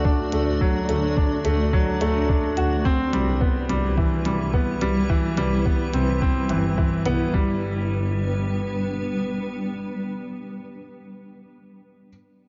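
A straight 4/4 pulse from a muffled, thumpy electronic kick and faint, clicky hi-hats carries this luminous, tender piano and strings electronica fragment until the hats drop out at 7.2 s and the kick at 7.4 s, with the harmony moving from D to Cmaj7 and arriving on G at 7.3 s. A clear, woody upright piano sits up front playing a short-sustain riff through tape echo, over a dark, veiled con sordino double bass section bowing with vibrato and tube saturation. A blurred, evolving granular cloud pad of detuned sines holds sustained chords, and both pad and bass pump with sidechain compression, all in light digital ambience with a soft, rounded top end.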